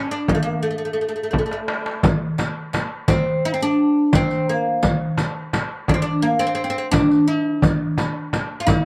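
A bright, woody fretless oud, plectrum-plucked on double strings and placed up front, opens this festive, passionate excerpt from a longer Arabic maqam ensemble piece in D maqam saba, moving at 86 BPM in a straight 4/4. A crisp, high metal-shelled darbuka with a large-room ambience and a deep, soft-handed frame drum join almost at once, and a drum fill from 1.3 to 2.0 seconds leads into a new section. There the riq enters, its dark jingles sitting in the background. Close, detailed miking and light reverb frame the ensemble.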